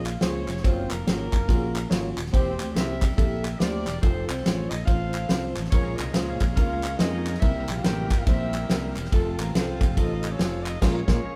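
A soulful, fervent uptempo gospel piece opens with the band together: a loose, jazz-style horn section carries the melody in octave doubling with light vibrato, over clean, mellow tine electric piano, a growly, punchy fingered bass and an up-front acoustic drum kit with a fat snare, kick, ride and crash, while quieter, close and dry group handclaps add a hollow human touch. At 5.7 seconds a bright, shouting tonewheel organ enters very quietly with sustained chords, lightly overdriven through a slow rotary speaker with key click. The swung groove ends on a band accent at 10.8 seconds, heard as a live band in one room with light reverb.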